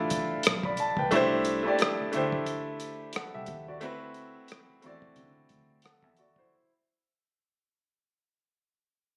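Smooth and soulful, this short R&B and neo-soul excerpt sits at 89 BPM in 4/4 with a light sixteenth-note swing, fading out across its full 6.5 seconds. A clear, natural grand piano sits up front voicing extended chords from G13 through C69 to D13, over a dark, round, foam-muted vintage electric bass and a cloth-damped, thuddy acoustic kit of hi-hat, tight kick and rim click with a rolled-off top. The phone-in-the-room capture carries moderate studio reverb and compression.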